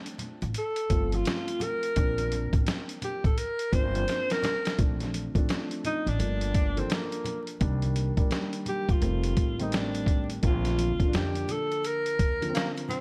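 Vinyl crackle and studio reverb frame this relaxed, cool jazz-hop cut from a longer piece, where a gritty, pitched-down boom bap drum kit sits up front with a thumpy kick, a dark, vintage grand piano supplies mellow accompaniment, faint tube shaker and congas add soft-handed color, a woody pizzicato upright bass anchors the swung groove, a breathy, roomy alto saxophone solos with scooped notes and vibrato through the opening 4.8 seconds as a drum fill closes that stretch, then carries the melody onward, and a growling, raspy tenor saxophone slips in at 12.5 seconds.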